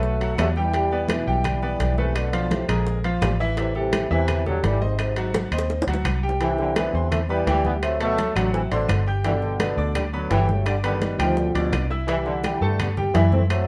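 Sunny and danceable, this salsa excerpt moves at 169 BPM in a straight 4/4, cut from a longer piece. A mellow, distant trombone section carries the melody with light vibrato and tight, punchy phrasing, while a bright, brilliant concert grand piano with a worn character and deep bass fills the accompaniment. Up front, a vintage foam-muted fingered electric bass sounds dark and round through its amp, anchoring harmonies that move from Em7 and Bm7b5 through Am7 and Ab7 into Cmaj9, D13, Gmaj7 and C6. The percussion sits lower in the mix: tight, high-tuned bongos with hard hands, thin-skinned congas, ringing metal-shell timbales and woody claves in the background, with a drum fill arriving from 5.3 to 6.4 seconds. At 6.4 seconds a second, brighter trombone section joins with a smooth top, adding a supporting line until 13.4 seconds, all set in a moderate studio reverb.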